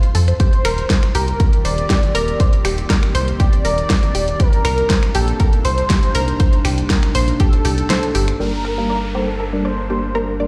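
In a straight four-beat progressive house groove, a punchy up-front electronic kick and a pop kit of finger snaps, filtered hi-hats and a fat snare drive a dreamy, expansive passage where a round, deep analog bass, bright detuned arpeggiated plucks with tape echo, a thick, nasal unison lead with vibrato and a morphing, warbling wavetable pad all pump against the beat in a stony room, until the kick drops out at 7.9 s and at 8.4 s the drums give way to soft, gritty, mellow chord stabs and an electronic downlifter.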